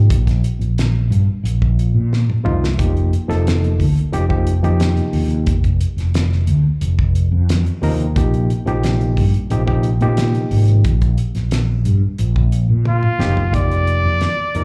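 Set in a straight 4/4 at 89 BPM, this funky, bright electric jazz fusion excerpt rides on a damped 70s drum kit with a fat snare and tight kick, breaking into fills at 2.1 and 12.9 seconds, while a round, up-front fretless bass with ensemble chorus anchors the Bbsus4 and F9sus4 harmony. A barky, gritty reed electric piano, overdriven through a combo amp with fast tremolo and slapback echo, supplies the accompaniment, and at 12.9 seconds a bright jazz trumpet enters with vibrato and slapback echo for a brief solo. The sound is that of a live gig heard through the venue's PA, with a touch of club reverb.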